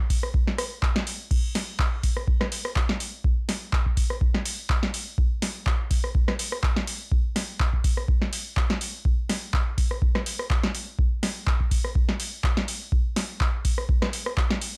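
A dry, close mix puts a deep analog kick and an electro drum machine up front, both re-recorded in a large room, in this short house cut running at 124 BPM in 4/4 with a light 16th-note swing. The drum machine supplies a punchy snare, handclaps, a rim click, a crash cymbal and metallic hi-hats, with a short room sound on the snare, claps and hats. The two drum parts play together from the first second to nearly 15 seconds, giving a hypnotic, trippy groove.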